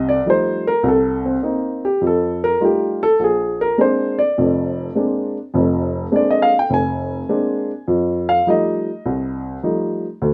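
A lone upright piano opens this short solo jazz passage, its woody tone and short sustain sitting up front in a light reverb. At 103 BPM in 4/4 with a lilting swing on the eighth notes, the playing spans F1 to Ab5 and moves through F9, Cm7 and Bb9 before settling back on F9 at 7.9 seconds. The mood is warm and sophisticated, and the instrument is tuned to A4 = 442 Hz in this 10.3-second cut from a longer piece.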